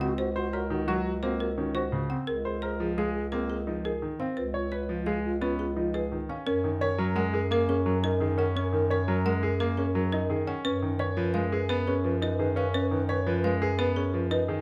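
From the first beat, this hypnotic, bright fragment of minimalist classical pattern music in six sets a dry, woody folk marimba melody struck with hard mallets against a mellow, airy alto flute line in the background, while a brilliant, up-front concert grand lays down a short-sustained accompaniment, a second, intimate grand piano plays arpeggios with audible action noise, and a roomy bass clarinet anchors the low end, all captured by close, detailed microphones in light reverb as the harmony shifts to a new key at 6.5 seconds.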